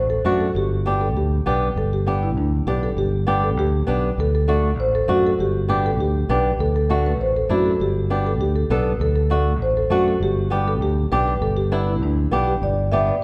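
A growly, punchy fingered electric bass opens this sunny, festive Latin excerpt, sitting up front with a bright, amped edge. The marimba enters almost at once with the melody, its soft mallets on padauk bars giving a woody, round, mellow tone with a slightly boxy character. By 0.2 seconds a thumb-plucked flamenco guitar joins as accompaniment, acoustic and close, adding warmth in the middle register. The harmony swings back and forth between D and G in a straight, lively four-four feel, with a fresh pass through the opening material beginning around 3.0 seconds. A lush recital-hall reverb surrounds the ensemble, lending the festive groove a spacious, church-like glow until the clip cuts off at 13.1 seconds.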